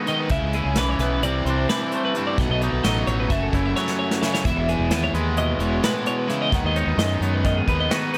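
Three guitars open this bright, wistful math rock and midwest emo excerpt in 9/8: a clean, twangy electric guitar playing accompaniment, a bright twelve-string electric playing arpeggios through tape echo, and a double-tracked, overdriven electric guitar riffing up front. A soft brush kit with a punchy kick joins at 0.1 seconds, and a round, fuzz-drenched fingered bass enters at 0.3 seconds as the harmony moves through chords such as C#m7, C69 and Emaj7. A drum fill at 3.8 seconds stands out in a dry, close-sounding mix.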